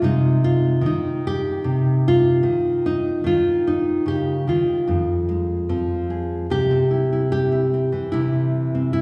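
A fingerpicked nylon-string guitar plays alone in this haunting, melancholic folk fragment cut from a longer piece, its classical, up-front tone ringing through a wet concert-hall reverb heard from further back in the room as the chords move from Ab6/C through Ebsus2 and Fm before a new section opens on C at 6.5 seconds.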